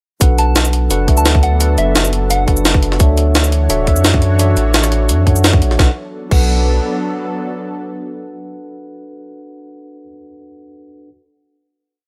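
A deep, saturated sub bass sits up front from 0.2 seconds, holding long gliding notes beneath this soulful, dreamy liquid drum and bass piece at 172 BPM in B minor. A tight, layered electronic kick and a gritty, pitched-up, sampler-style jungle kit with snare, hi-hat, cabasa and crash roll out a two-step groove, the compressed kit sounding as if re-recorded in a small room. Above them, a mellow tine electric piano with dub echo plays held chords with syncopated pushes, while a lush, detuned sawtooth unison pad with chorus and sidechain pumping swells in slowly and sustains. A soft, pure FM bell with chorus and tape echo adds short, decaying phrases in the background near the start. The drop moves from Bm7 to Dmaj9 before settling back on Bm7 at 5.8 seconds for a final chord. The pad fades out at 9.3 seconds, and the electric piano rings on until 11.1 seconds in a digital ambience.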